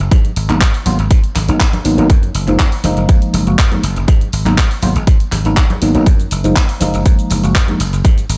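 A dry, growly thumbed slap bass opens alongside a tape-colored house drum kit of cabasa, handclaps and hi-hat, with ringing, very quiet tambourine and congas, before a punchy, up-front electronic kick arrives at 0.1 seconds and a mellow tine electric piano through phaser and low-pass filter joins at 0.5 seconds, all driving a groovy, funky filtered disco house excerpt at 121 BPM that pumps over G#m7 and F#maj13 with little reverb.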